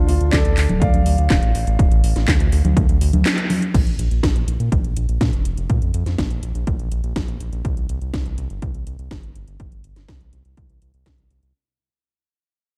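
A straight 4/4 italo disco groove, bittersweet and danceable, opens over a Dm chord with a dark, mellow concert grand piano melody carrying digital delay until it stops at 3.2 seconds, while a round, evolving analog bass built from sawtooth and sine with ring modulation sits up front alongside a punchy overdriven electronic kick and an overdriven house kit of cracking snare, metallic hi-hats, congas, handclaps and crash cymbal, both drum parts re-recorded in a large room, through a band accent and brief break at 3.3 seconds before this cut from a longer piece fades out over Bb5 and C5 chords in a dark production with light reverb.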